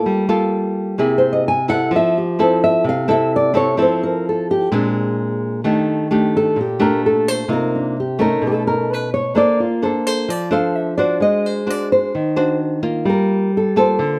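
Sophisticated and sunny, this bossa nova excerpt features two nylon-string guitars up front in light reverb, one giving a thumb-plucked classical accompaniment with fresh strings from the start while a small, fingerpicked melody guitar joins at 1.2 seconds over rich chords such as Gm9, Ebmaj7#11 and Ab7#11.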